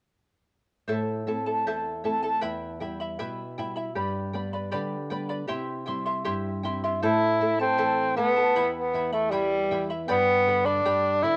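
A straight 2/4 pulse at 78 BPM drives this festive, earthy Andean folk piece, cut from a longer performance and played by an Andean ensemble. From 0.9 seconds, a fingerpicked charango sits up front, its double strings, some doubled at the octave, giving a shimmering, warm acoustic sparkle, while a thumb-plucked flamenco guitar adds a lower, quieter acoustic bed beneath it. The harmony moves through Am, Em, G and C, then returns to Am, Em and G as the second section begins at 7.0 seconds. There, a tenor saxophone enters up front with the melody, its vintage, warm tone carrying a classical-style vibrato and a plate reverb that it shares with the charango. The whole ensemble plays until 11.4 seconds, and the cassette home recording, set in a moderate studio reverb, lends the sound a homespun character.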